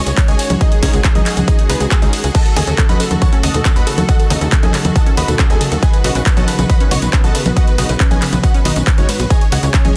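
Uplifting trance at 138 BPM in a straight 4/4, this bittersweet, emotional clip is cut from a longer piece and moves through C#sus2, D#dim and B chords. A bright, detuned supersaw stab carries the melody with analog chorus and dub echo, while a dark, mellow baby grand piano plays a second line in the background, its action noise audible and its tone vintage. Beneath them, a dark studio string section bowed sul tasto holds sustained chords with light vibrato and a soft attack, and a tight, driving sequencer bass with a sawtooth and square-wave edge and a touch of ring modulation anchors the low end. An overdriven, punchy electronic kick sits up front alongside a layered big-room kit of congas, handclaps, hi-hat, ride, crash and tambourine, and sidechain pumping runs through the melodic parts, the bass and the kit's hats, percussion and cymbals. A lush unison pluck enters at 2.6 seconds with arpeggios colored by cassette-tape grit and dub echo. 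The mix is dry with little reverb, and the master is dense and heavily limited.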